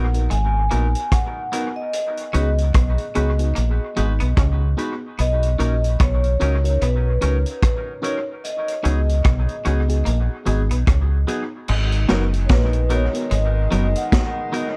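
A bittersweet, longing lovers rock reggae excerpt at 74 BPM in G# minor opens with a mellow, ringing soft-mallet vibraphone melody trailed by tape echo. It floats over a lush, warbling FM electric piano with chorus, tremolo and dub echo, a clean, twangy guitar riff, picked guitar stabs echoing in the background, and a deep, round fingered bass sitting up front. A vintage drum kit enters at 0.1 seconds with punchy kick, high-tuned snare, rim click, hi-hat and crash, swinging the 16ths gently as the chords move through G#m9, C#9sus4 and Bmaj9; at 11.7 seconds a smooth horn section with light vibrato and dub echo joins in the background, all set in a dark, warm production with light reverb.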